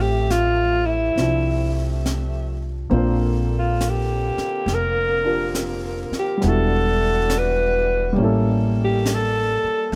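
A breathy, subtone alto saxophone sits up front and takes a solo from 2.9 seconds in this intimate, romantic jazz ballad at 68 BPM with a swung 4/4 feel, supported by a warm concert grand piano with deep bass and short sustain, a mellow, vibrato-rich saxophone section holding soft-attack chords, a woody pizzicato upright bass, and a brushed drum kit with a high-tuned snare entering at 0.3 seconds, all captured close and detailed with little reverb as the harmony moves from Fmaj9 through Bbmaj9 and Em9 to A7b9.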